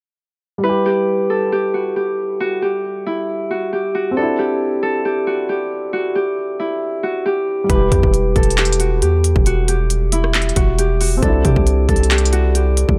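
A bright, thumb-plucked Celtic harp melody rings up front over a dark concert grand piano, both low-pass filtered, in this eerie, melancholic half-time trap piece in E minor at 136 BPM, moving between Em and Cadd9 in a small room ambience until a deep, mellow, sine-toned 808-style bass and an up-front electronic trap kit with a hard-clipped kick, crisp hi-hats, handclaps and rim clicks arrive at 7.7 seconds.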